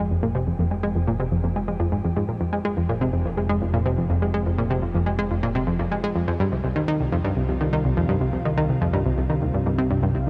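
Bathed in a huge, long-tailed ambient reverb, this hypnotic, mysterious slice of sequencer-driven space music has a lush, detuned unison pad with chorus fading in from 0.0 seconds behind a bright, up-front analog pluck riff whose sub octave and tape echo drive the groove. A fat, saturated analog bass holds a low F underneath as the harmony moves from Fm to Csus4 at 6.3 seconds. At 10.2 seconds, a mellow, horn-like synth lead with vibrato and analog chorus enters softly in the background just before the cut.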